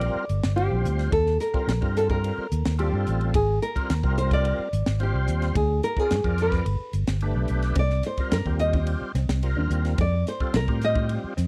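Driving and funky, this dry, close 1970s-style electric jazz fusion clip puts a fingerpicked nylon-string guitar melody with slapback echo up front over a gritty, overdriven tonewheel organ with key click, chorus vibrato and a slow rotary speaker, a round, punchy fingered electric bass, and a crisp drum kit with a high-tuned snare and tight kick, while a dark, clean electric guitar with lush chorus and slapback echo adds background stabs from 7.8 seconds.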